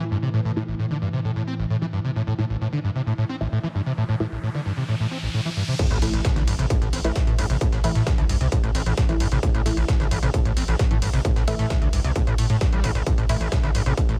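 A squelchy, screaming acid line with heavy distortion and a chorus shimmer opens this driving, dark peak-time techno excerpt, resting on a mellow, evolving analog drone in the background. Muted, nasal dub chord stabs with a phaser and digital delay soon join, each short and resonant, all three parts pumping against the sidechain. A riser climbs from 3.8 seconds into an electronic impact at the drop at 5.8 seconds, where the drone stops and the groove arrives. A distorted, layered kick sits up front with a gritty, wave-folded synth bass that pumps beneath it, while a punchy analog drum machine adds crash, hi-hat and ride, its hats and cymbals also pumping. A compressed, overdriven breakbeat kit with filtered hi-hat and snare sits low in the mix, and the whole track stays dry.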